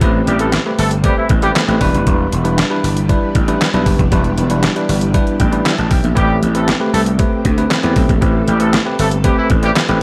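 Slick and danceable, this early-eighties boogie funk cut in A minor moves at a straight 117 BPM in 4/4, drawn from a longer piece. A detuned 8-bit drum machine with a thumpy kick, medium-tuned snare, hi-hat and handclaps sits up front under gated reverb, beside a gritty, growly slap bass that is overdriven and punchy. A bell-like tine electric piano adds clean accompaniment and plays a short fill at 5.1 seconds, while a very quiet string machine holds lush, sawtooth-toned chords with a slow attack and ensemble chorus. A tight horn section plays a clear second line with light vibrato and octave doubling, entering at 0.3 seconds and returning at 6.2 seconds. The harmony moves from Am9 to Em7 and back, and the overall sound is dry, with little reverb.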